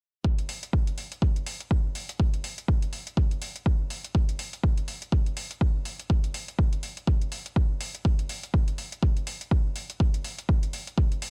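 A deep, overdriven electronic kick drum sits up front in this short house excerpt, entering at 0.2 seconds and carrying a layered, produced weight that was re-recorded in a large room. Just behind it, a metallic electronic hi-hat comes in at 0.4 seconds, also overdriven and layered, with its own large-room character, set well below the kick in level. The groove runs in 4/4 with a swung sixteenth-note feel, giving the pared-back drum pattern a hypnotic, deep mood. The two drums hold a single section through to 11.3 seconds, cut from a longer piece. The mix carries little reverb, and the master is dense and heavily limited in a modern style.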